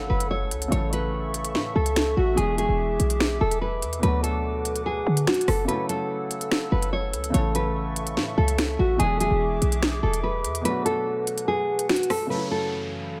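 An impact opens this cold, ominous drill hip hop excerpt in F# minor at 145 BPM in half-time, where a full-bodied, fingerpicked nylon-string guitar carries the filtered melody over a soft, felt-muted upright piano with audible action noise, a dark, warbling tape-like pad with chorus and reverb holds nostalgic lo-fi chords, a punchy, tight 808-style bass and an overdriven drill kit of crisp hats, sharp snare, rim clicks and finger snaps sit up front, a brief break lands at 5.7 seconds, and a downlifter closes things out at 12.3 seconds.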